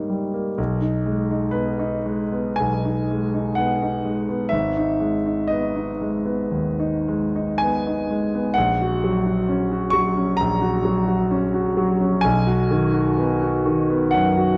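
A dark, warm production places the piano up front within the lingering tail of a wet scoring stage, its tone clear and natural with a deep bass. This melancholic, mournful romantic nocturne for solo concert grand unfolds in G# minor at a slow, rubato 52-66 BPM in 4/4, spanning G#1 to C#6 across a 14.6-second passage cut from a longer piece. The harmony opens on D#7 over G#, settles into G# minor, then passes through F# over A# at 8.6 seconds before arriving on B at 12.3 seconds.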